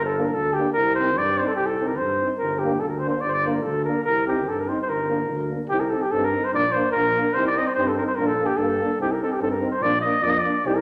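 This short excerpt of Balkan brass band folk music opens with a vintage-toned flugelhorn carrying the melody up front, over a tuba bass that sounds distant and roomy with a light vibrato. A moment later, at 0.2 seconds, a soft-attacked French horn with a smooth top and a euphonium with gentle vibrato join as background accompaniment. The mood is restless and virtuosic, driven by a straight two-beat metre, while the parts are played in a classical style, with mellow flugelhorn, French horn and tuba tones and a warm euphonium. The harmony moves between G minor and C minor in the opening section, then shifts to alternate C minor and B-flat major after 5.7 seconds. A wet, large studio reverb gives the ensemble a spacious sound as the passage runs to its cut-off at 10.8 seconds.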